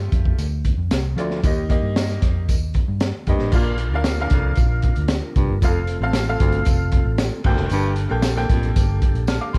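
A bright, slightly detuned upright piano with tube saturation and a round, foam-muted electric bass open this joyful, danceable stretch of uptempo 1960s-style soul at 115 BPM in Bb major, soon joined by a gritty, punchy breakbeat drum kit up front and a jingly tambourine in the background, while a mellow baritone saxophone riff with scooped notes and light vibrato arrives at 1.2 seconds and a soft, flute-like tonewheel organ with key click and fast rotary speaker adds sustained chords from 3.5 seconds, within a dark, dry production.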